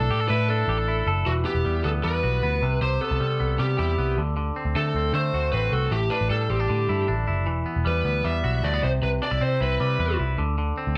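A light reverb gives this wistful, restless slice of jangly indie pop a modest sense of space, with the chords cycling from A7sus4 through Emadd9 and Cmaj7 to D7. A bright, twangy, compressed clean electric guitar picks arpeggios up front over a dark, round, punchy muted electric bass. An overdriven lead guitar through a small cranked amp carries the melody with plate reverb until 10.2 seconds, just before this fragment of a longer piece cuts off.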